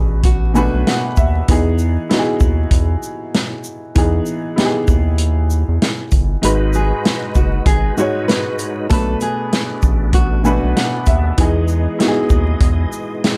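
Over vinyl crackle, a dark, woody upright piano with a cassette-tape tint and a round, deep analog bass open this confident, soulful boom-bap hip-hop piece at 97 BPM in E major, with a fingerpicked nylon-string guitar appearing briefly before a punchy vintage kit of kick, snare, hi-hat and shaker settles into a groove swung at 58%; at 6.4 seconds a reedy tonewheel organ with slow rotary shimmer enters on sustained chords as the kick briefly drops out, and the guitar soon returns with slapback echo over changes moving through Bm7, Emaj7 and G#m7.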